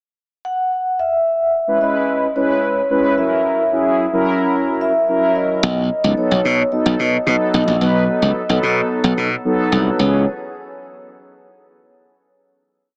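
Dance-pop in C# minor at 110 BPM in a straight 4/4, energetic and driving across a short, complete piece. A vibraphone played with soft mallets carries the motif-based melody from 0.4 s, its metallic, ringing tone smoothed by a medium motor vibrato and trailed by a diffuse ambient delay. Mellow synth brass joins at 1.7 s with brassy, round sawtooth chord stabs in drop2 voicing, syncopated and up front, shaped by a filter sweep and thickened with chorus. After the harmony moves from C#m7 through F#7, a glassy slap bass enters at 5.6 s as the chord changes to B7, bright and punchy, driving a syncopated line with chromatic approach notes before everything settles on a final C#m7. The whole mix is soaked in a wet plate reverb, giving a dreamy, small-speaker sound.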